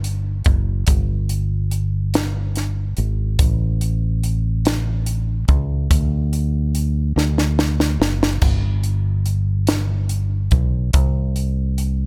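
Slow gospel in 6/8 at 48 BPM, counted in dotted quarters, this passage in G major carries a soulful, reverent mood with a straight feel. A fingered electric bass sits up front, its dark, round tone heard directly and pitched low, moving between F#1 and D2. Beside it, a crisp fusion drum kit plays hi-hat, kick, snare and splash cymbal, with a high-tuned snare and a punchy kick captured in an airy studio room for a polished sound. At 7.2 seconds the drums break into a fill that runs to 8.4 seconds before the groove resumes. The mix is dry, keeping both parts close and present across the short 12-second cut from a longer piece.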